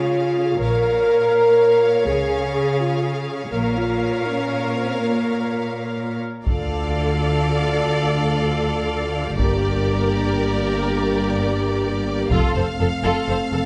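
Dark, soft-edged French horns hold sustained chords at the front of this heroic, relentless slice of epic orchestral film score, moving in 6/8 at 82 BPM. Bright, intense violins carry the melody above a second violin line with a smooth, expressive top, while lush violas fill the middle and clear cellos anchor the bass. Rich double basses enter at 0.6 s and return at 6.5 s, where the harmony shifts from Db and Bbm toward Dm, Gm and F and a close, dry taiko ensemble strikes in with heavy sticks, all set in a wet recital-hall reverb.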